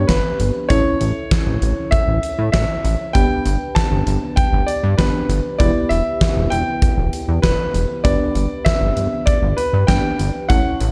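A close, intimate grand piano with audible action noise carries the delayed melody over glassy, bell-like chorused FM electric piano and a glossy, retro pulse-wave synth bass from the start, joined at 0.1 seconds by a huge arena drum kit with a fat snare and punchy kick, in this upbeat yet wistful 98 BPM synth-pop excerpt that moves through G, A and E minor with a dark production and light small-room reverb.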